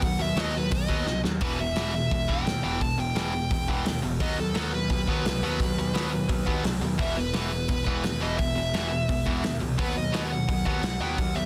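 A bright, up-front distorted guitar riff drives this aggressive, angry punk rock excerpt, with a dark, smooth lead guitar melody, a growling fuzz bass, a loose drum kit with a punchy kick, dark cymbals and a quick fill at 1.1 seconds, and a very quiet, compressed second overdriven guitar joining at 7.0 seconds, all in a dry, dense, heavily limited mix.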